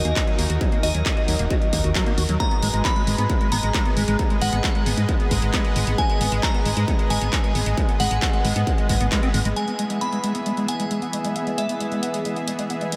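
Uplifting trance at 134 BPM in G# minor, euphoric and driving, built on a lush, detuned supersaw pad holding sustained chords under a filter sweep and sidechain pumping. A squelchy, resonant acid bass runs arpeggios through phaser, chorus and delay, while a glassy FM bell carries a second line with chorus, delay and vintage 12-bit sampler grit. A round, dark FM bass and a distorted, up-front kick anchor the low end alongside handclaps and hi-hat from a punchy analog drum machine re-recorded in a small room, until the kick drops out shortly before the FM bass stops at 9.5 seconds; then, as the chords move to E at 9.6 seconds, the filter sweep shifts onto the acid bass, all within a dreamy mix soaked in huge ambient reverb.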